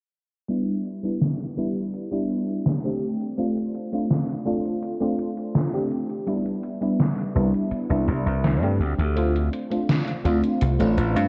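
A bright, punchy slap bass with tube saturation arrives up front at 7.4 seconds, anchoring the back stretch of this nostalgic, woozy vaporwave excerpt in C major at 83 BPM. From 0.5 seconds a lush, dreamy FM electric piano with a soft pad layer moves through Cmaj7 and G9sus4 voicings, colored by phaser, analog chorus and tape echo, alongside an overdriven gated 80s drum machine whose hi-hat and snare carry gated reverb and the ring of a large room. A filter sweep runs throughout, and the dark production, with its cassette tape grain, low-pass filtering and digital ambience, gives the whole a hazy, faded glow.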